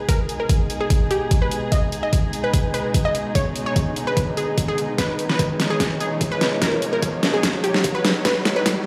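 A half-time groove in 4/4 drives this short, chaotic and menacing heavy wobble dubstep build-up. An overdriven electronic kick with a knocking punch sits up front, joined by an overdriven, layered kit of deep snare and bright hi-hats that breaks into a fill from 5.0 seconds. Over a dark bowed string section holding woody, sustained chords with light vibrato and sidechain pumping, a lush, detuned sawtooth unison pluck carries the melody, its fast-attack, decaying notes trailed by dub echo as a filter sweep runs through the passage. An electronic riser enters in the background at 1.9 seconds, adding to the mounting tension. The whole mix sounds as if played through a big sound system in a bare room, with large studio and plate reverb and a high-pass filter thinning the low end.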